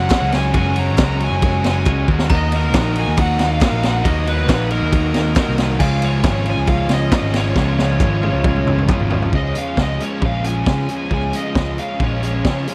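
A bluesy, distorted lead guitar with tape echo carries the melody over crunchy and bright fuzz guitar riffs, an up-front picked bass and a punchy, gritty garage drum kit in this jangly, carefree indie rock excerpt at 136 BPM in Db major, while a buzzy combo organ, a bell-like glockenspiel and hollow handclaps sit very quiet until around 9 seconds, when the dry, close 1970s-style sound moves to a Db6 chord after a drum fill from 7.6 to 9.3 seconds.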